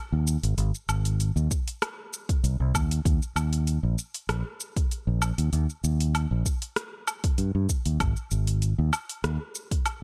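Sunset chillout at 97 BPM in Eb major with a lightly swung 4/4 feel and a smooth, warm mood, this excerpt from a longer piece opens with an up-front, direct and amped fingered electric bass at 0.1 seconds. A layered deep house drum kit with metallic hi-hats, rim click, shaker and woodblock joins at 0.3 seconds with a tape-warm character, and a deep, layered electronic kick drum arrives at 1.5 seconds, all in a dry, close-sounding mix.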